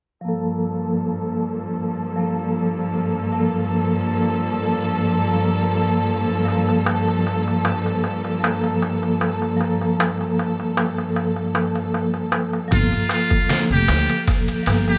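A dim, small-room sound with light reverb frames this cinematic, melancholic trip hop excerpt at 77 BPM in G minor, where a mellow, soft-mallet vibraphone with tremolo, 12-bit grit and tape echo rings out a Gm9 chord beside a rich, bowed string section, both under a filter sweep, before a clay darbuka played with soft hands joins at 6.5 seconds and, from 12.7 seconds as the strings stop, a woody pizzicato upright bass, an overdriven, pitched-down sampler drum kit of thumpy kick, snare and ride, and a buzzy, distant metal-muted trumpet melody carry the excerpt through its final seconds.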